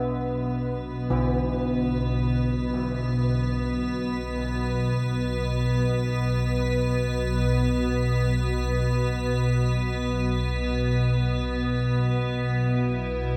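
An organ-like drone sits up front in this unsettling, ominous stretch of dark ambient music, its calm, detuned sine tone held low and steady with ensemble chorus and its own reverb as it fades in. Above it, an icy glass pad adds an airy, crystalline shimmer, bright and wave-folded with ring modulation and a noise layer, fading in alongside the drone and washed in chorus and shimmer reverb. Old church bells ring out in arpeggios from the start until 7.6 seconds, their bronze, clangorous tone close-miked and dry, with a worn iron clapper and beating overtones. At 12.6 seconds a very quiet sweeping resonant pad joins with a full-bodied, evolving sawtooth sound and a filter swell, settling on a B5 chord. The piece moves in free time, and the whole mix feels dreamy and soaked in reverb.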